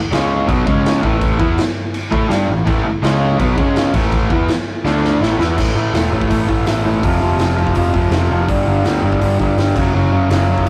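A straight, driving 4/4 beat from a raw garage drum kit, with a punchy kick, medium-tuned snare and crash cymbals ringing in a pumping stone room, powers this upbeat, energetic punk rock excerpt, and a drum fill lands at 4.8 seconds. Two picked, overdriven guitars hammer out the riff, one bright and up front, the other warmer, over a dark, round picked bass. A very quiet, double-tracked fuzz guitar thickens the riff until it drops out at 5.6 seconds as the second section begins, all caught in a rough rehearsal-room sound with light reverb and saturation.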